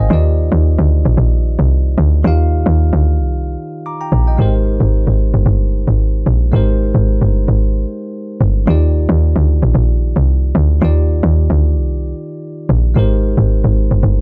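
Soulful and warm, this amapiano excerpt moves at 112 BPM in 4/4 with a 55% swing on the sixteenths, in Eb major. A punchy, woody log drum bass sits up front with a fast, decaying attack and a layer of noise, while a bell-like tine electric piano provides bright, clean accompaniment further back over harmony alternating between Ebmaj9 and Abmaj7. The dark production stays dry and close throughout, with both parts playing for the full 14.2 seconds.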